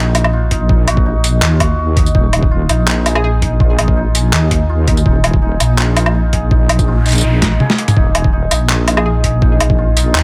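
Tense and cinematic, this excerpt of half-time drum and bass rests on a single minor add-nine chord. A shimmering, ringing santur plays hammered arpeggios through a delay, while a deep, dark wobble bass built from detuned sawtooth and sine tones sits up front with chorus and a sustained, compressed body. A gritty, overdriven boom bap sampler-style kit of handclaps, hi-hat, medium-tuned snare, tambourine, toms and woodblock sounds re-recorded in a small room, joined from 0.5 seconds by a thumpy electronic kick. A hollow, bouncy square pluck with ring modulation and a filter sweep surfaces briefly in the background at 3.2 and 9.0 seconds, trailed by chorus and digital delay. An electronic noise sweep enters in the background at 6.9 seconds, overlapping a drum fill near 7.4 seconds, all set in a digital ambience.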